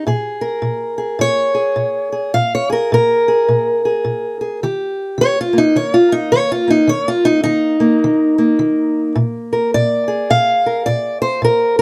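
A fingerpicked steel-string parlour guitar carries this laid-back, soulful acoustic country blues on its own, its fresh strings giving a boxy, up-front tone with audible finger squeak. The clip, cut from a longer piece, moves at 105 BPM in 4/4 with a light swing on the eighth notes, passing through Bbm7, then Eb at 4.6 seconds and Bb7 at 9.2 seconds. A moderate studio reverb adds a little space around the guitar.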